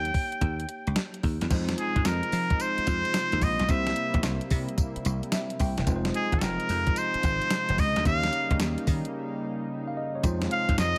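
A trumpet with a straight mute leads this punchy, slick new jack swing excerpt in F minor at 110 BPM, its nasal, brilliant lead carried by delay over a worn, slightly out-of-tune tine electric piano, a dry, foam-muted thumbed slap bass, and a clean 12-bit drum machine with a thumpy kick, fat snare, hi-hat, crash and tambourine swinging on the 16ths. At 1.5 seconds a brassy, detuned sawtooth pad enters with chorus, filter swell and vibrato, sustaining chords through a Fm7, C7 and Eb7 progression. The electric piano slips in a fill at 5.1 seconds, and a break arrives at 9.1 seconds, all set in light digital ambience.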